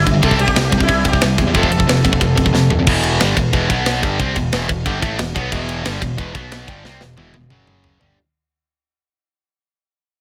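A straight 4/4 pulse drives this dark, relentless heavy metal cut at 181 BPM in E phrygian, taken from a longer piece. A buzzing, shimmering sitar carries the melody only at the very start, from 0.0 to 2.5 seconds, with digital delay on its plectrum-plucked line before the drums break into a fill. Underneath, a sludgy, double-tracked distorted guitar grinds out the riff up front, while a fuzz-soaked picked electric bass adds a dark, round low end. The tight drum kit, with its medium-tuned snare, crash, ride and toms, sits forward in a studio room and rolls into a longer fill near the close. From 2.9 seconds the music moves into a new section built on Em and B5 that fades out to the end under light reverb.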